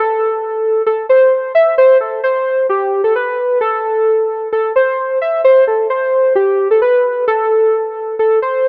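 Hip hop with a dark, hard-hitting mood, heard here in a short cut from a longer piece that moves with a half-time feel in 4/4. The only part is a set of warbly lo-fi synth keys playing alone from 0.0 to 8.7 seconds, sitting in a narrow range between G4 and E5. Its tone blends triangle and sawtooth colours with a fast attack and a decaying tail, giving it a nostalgic, mellow character that sits up front. Chorus adds a wavering shimmer to the keys, while dub echo trails each note into the space behind them. The overall sound is echo-heavy with light reverb, lending the lone keyboard a hazy, worn quality.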